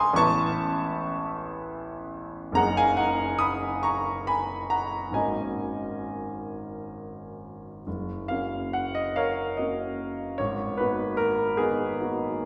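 Impressionist classical solo piano in a dreamy, serene 6/8 with rubato phrasing: a clear, present grand piano sits up front with long sustain across a broad range, its lush extended chords blooming into a recital-hall reverb before the opening idea gives way to a new section at 7.9 seconds in this brief fragment of a longer piece.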